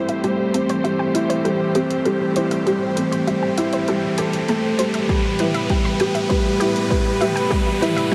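Hypnotic and melancholic, this piano and strings electronica excerpt moves at 99 BPM in 4/4 with a straight feel in A minor, playing as a build-up cut from a longer piece. A dark, woody upright piano carries the riff up front through tape echo, while a rich, bowed studio string section holds smooth sustained chords with vibrato, shaped by sidechain pumping and a low-pass filter. In the background, a detuned analog pluck spins bright arpeggios through chorus, tape echo and pumping, with a filter sweep running across its entire length. A layered deep house kit of hi-hat and toms adds percussion with overdrive and studio reverb, and an electronic riser enters at 0.4 seconds. A punchy, overdriven electronic kick joins at 5.1 seconds as the harmony shifts from Am7 to Em/A, all within a warm production bathed in a huge ambient reverb.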